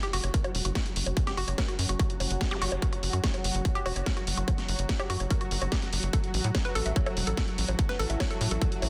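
A straight 4/4 pulse at 145 BPM drives this alien, hypnotic psychedelic trance excerpt, anchored by a distorted, layered electronic kick up front from 0.3 seconds and a techno kit of bongos, warm hats and a cracking snare, both re-recorded in a large room. Beneath them, a tight, punchy sequencer bass of sawtooth and square waves with a fast filter pluck and tube saturation drives the low end between E1 and A2. A woody, wave-folded pluck with a noise layer carries the riff between F#4 and E5, treated with chorus, tape echo and sidechain pumping. A pulsing, tempo-synced gated texture of detuned triangle voices holds sustained chords, while a deep, moody pad with ring modulation and a sub octave sits in the background from C#4 to A5, both pumping through sidechain, chorus and reverb. A very quiet zap flickers at 2.5 seconds, and the chords shift from F#5 to A5 at 6.1 seconds within light digital ambience and a dense, heavily limited modern master.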